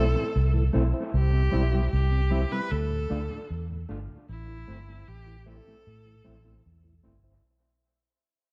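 A clear, focused bowed viola melody with vibrato opens this laid-back, hazy reggae fragment over a clean, mellow electric guitar with spring reverb, a round tonewheel organ sitting in the background with chorus vibrato and a slow rotary speaker, and an up-front, foam-muted vintage fingered bass, while dub echo trails the viola, guitar and organ as Am, C and Dm chords pass through a dark production with light reverb and faint mains hum, the whole piece fading out from its first moment.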